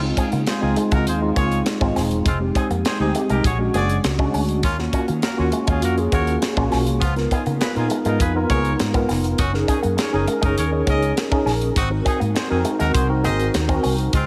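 Polished 1980s jazz-funk pop at 101 BPM in 4/4 with an urban, slick mood: this 14-second cut from a longer piece puts a mellow, clean tine electric piano with ensemble chorus up front over chords moving from Dbmaj9 through Bb7alt and Gb69 to Ab7, with a warm, amped fretless bass under subtle chorus, a bright, twangy, compressed envelope-filtered guitar riff tucked in the background, a smooth-topped jazz horn section with light vibrato adding a second line from 0.2 s, and a tight small-room funk kit with a high-tuned snare and gated reverb.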